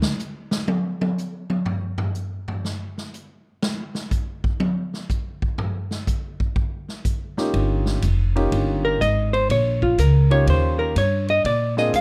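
A relaxed, sophisticated small-group swing and bop passage at 123 BPM opens with a solo on a punchy, big-room drum kit, marked at the downbeat by a note from the upright bass, which returns around 7.5 seconds with woody pizzicato playing alongside warm grand piano accompaniment over an Eb7 chord, before a dark, clean hollow-body electric guitar takes the melody up front with plate reverb from 8.8 seconds.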